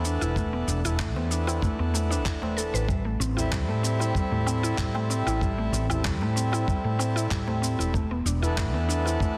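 A reedy pedal harmonium, a dark, growly fretless electric bass and a gritty kit of electronic cabasa, handclaps and woodblock open this mystical, meditative stretch of organic downtempo, with a light swing in the groove. The harmonium and bass both carry sidechain pumping, and the harmonium also trails a delay. At 0.1 seconds a mallet-like synth pluck joins with woody, detuned arpeggios treated with chorus and delay, and a very quiet, low-tuned tabla enters close and dry at 0.2 seconds. A thumpy electronic kick drum arrives at 0.4 seconds to anchor the bottom end. The harmony drifts from E7sus4 to Am7 and back to E7sus4, all set in a moderate concert hall reverb with a dense, heavily limited modern master, in a cut from a longer piece.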